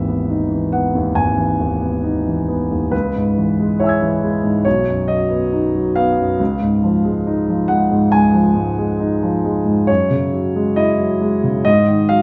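A warm concert grand piano carries this short classical excerpt alone, sitting up front with a deep bass, an open tone and long sustain across a span from G#1 to G#6. The style is impressionist, and the mood is nocturnal and hazy, unfolding at a slow 69 BPM in 4/4 with a rubato feel that lets the pulse breathe. The harmony drifts from Emaj7/G# through C#m7 and B to C#add9 at 6.4 seconds, then settles on F#sus2 before closing on a bare G#5 at 11.7 seconds. A moderate recital hall reverb, with a decay of 1.4 seconds, surrounds the instrument. Cut from a longer piece, the passage lasts just over 12 seconds and feels like a fleeting glimpse of a larger reverie.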